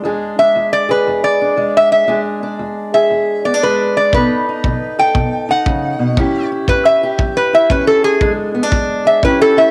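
Soulful and rollicking, this fragment of a longer acoustic country blues piece moves with a loping swing in four. A fingerpicked parlour steel-string guitar opens the track and carries the accompaniment, its boxy tone sitting up front through the changes from E7 to B7, A7 and back to E7. From 0.4 seconds a lap resonator guitar, played with fingerpicks and a steel bar, takes the melody and solos across the whole passage with a metallic, nasal slide voice that stands slightly louder than the rest. A tight kick drum, played with brushes and heard in a small room with a rolled-off top, joins at 4.1 seconds. The whole performance carries the homespun character of a cassette home recording, touched with light reverb.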